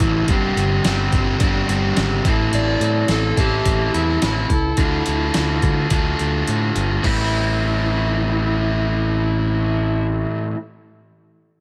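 Gritty and brooding, this classic rock fragment moves at a straight, steady pace in a heavy, saturated register. A dark, compressed overdriven electric guitar sits up front playing the riff throughout, joined for the first 2.5 seconds by a sludgy distorted guitar tucked in the background. Underneath, a growling picked electric bass with a round, amped tone holds down the low end, while a pitched-down, sampler-style drum kit with a thumpy kick and medium-tuned snare carries a boom bap flavour, its sound roughened as though re-recorded in a small room. From 2.5 seconds an overdriven slide guitar adds a fingered second line higher up, and the chords move from Gsus4 through Am to Dm. The kick and snare drop out just before the music returns to Am at 7.0 seconds, with the drums stopping altogether at 7.2 seconds as the guitars and bass ring on under light reverb.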